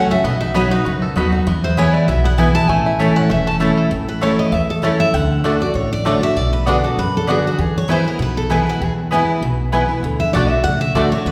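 A lively, rustic bluegrass excerpt in A major at 196 BPM opens with a twangy fingerpicked banjo melody set in the background, a bright, up-front picked dreadnought guitar carrying the lead, a full-bodied second guitar picking accompaniment, and double-strung mandolin stabs, with a thumpy pizzicato upright bass joining at 0.2 seconds. The 4/4 groove has a light swing on the eighths as the chords move through B, E and A, then the lead guitar takes a solo from 3.9 seconds over D, Bm, E and D. A reverberant church or concert-hall space surrounds the ensemble, giving it a live, airy ring.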